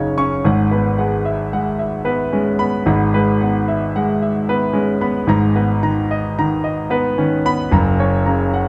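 A solo concert grand piano carries this intimate, peaceful piece of neoclassical minimalism, its clear yet worn tone sitting up front with a deep bass and a short sustain. The playing moves in a rubato three-beat feel across a broad range, shifting from Eadd9/G# at 0.5 seconds to G#madd9 at 5.3 seconds before settling on F# at 7.7 seconds. A moderate scoring-stage reverb gives the close, present sound a gentle sense of space in this brief fragment of a longer work.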